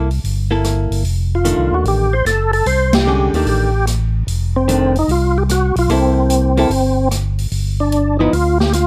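Close, detailed microphones and little reverb give this soul jazz organ trio a dry, intimate presence, cut from a longer piece and swinging at 148 BPM in 4/4 with a greasy feel. A tonewheel organ carries the bass line through a slow rotary speaker, its fat, clean tone sitting up front, while a miked and amplified hollow-body archtop guitar comps with a picked, compressed sound until 8.3 seconds. A swinging big-band drum kit in a natural studio room keeps time on hi-hat, ride cymbal, rim click and a medium-tuned snare. At 1.4 seconds a second, percussive tonewheel organ takes the melody, its key click, second-harmonic percussion and chorus vibrato adding bite to a full voice through its own slow rotary speaker. The band hits an accent at 2.9 seconds as the harmony moves from C6 to F13 and back, closing on G7(no3).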